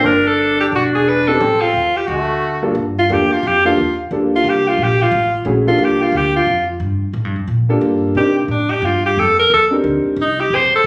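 A bright, punchy alto saxophone leads this cool, late-night jazz in small-group swing and bop, playing up front with vibrato and a plate reverb, then taking a forceful solo from 2.8 seconds to the end at 10.9 seconds. A raspy, growling trumpet sounds distant and gritty in a second line only until 2.6 seconds, while a boxy upright piano comps through to 10.2 seconds and a woody, thumpy pizzicato upright bass anchors the low end. The cut swings at 178 BPM in G minor, settling onto Gm7 and Cm7 under the solo, with moderate studio ambience and the sound of a phone recording made in the room.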